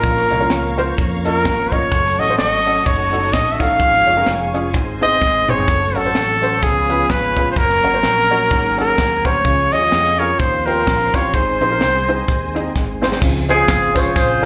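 Heard live through a club PA with light reverb, this hopeful, jubilant uptempo gospel excerpt swings at 128 BPM in Db major, with a breathy, close-miked trumpet carrying the melody over a woody, slightly detuned upright piano, a smooth tonewheel organ with slow rotary speaker in the background, lush, distant strings, a growly fingered electric bass and a crisp fusion drum kit with a punchy kick and two drum fills, before tambourine and handclaps join at 13.2 seconds and a mellow horn section takes up the melody at 13.5 seconds.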